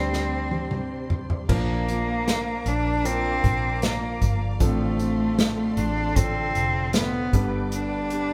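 A live band in one large studio room, with moderate reverb, carries this hopeful, emotional pop ballad at 77 BPM: a drum fill on an airy, unplugged kit played with bundle sticks fills the first 1.5 s, while from the very start a rich, nasal, up-front bowed cello with light vibrato sings the melody over clear, intimate grand piano with audible action noise, very quiet, full-bodied picked arpeggios on a jumbo steel-string acoustic guitar, a dark, foam-muted vintage electric bass with a round, punchy tone, and a lush symphonic string section holding sustained chords with portamento in the background.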